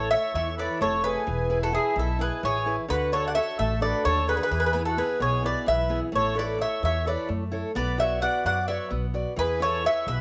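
Bright and energetic, this Greek folk piece is a 10.2-second cut from a longer performance by a bouzouki band, moving briskly at 259 BPM counted in eighths in a straight 7/8 in A major. The Greek bouzouki carries the melody up front, its picked double strings sounding metallic and brilliant with some octave-doubled courses, while a reedy, full-bodied accordion plays a close-miked second line beneath it. A picked old ladder-braced acoustic guitar supplies a boxy accompaniment with audible finger squeak, and these three parts share a cassette-tape tint and plate reverb. The upright bass sits up front with a woody, thumpy pizzicato tone from dark gut strings. Over a single section the harmony moves through A, E, D, E, A, B minor and E, and the whole home recording on cassette carries a moderate booth ambience.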